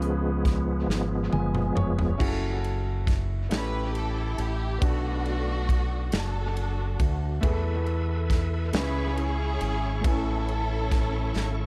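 A slow gospel sway in 6/8 at 46 dotted-quarter beats per minute, in A major, with an uplifting, hopeful mood. A bright, reedy tonewheel organ with key click, light overdrive, chorus vibrato and a slow rotary speaker opens with a short solo while drum and piano fills arrive, returning at 7.4 seconds for sustained chords. Throughout, an up-front punchy drum kit and a fingered electric bass pushed through an envelope filter anchor the groove beneath a clear, boxy grand piano with short sustain and analog delay, and from 3.5 seconds a lush, distant string section carries the melody with vibrato and portamento, all set in an echo-heavy mix with light reverb.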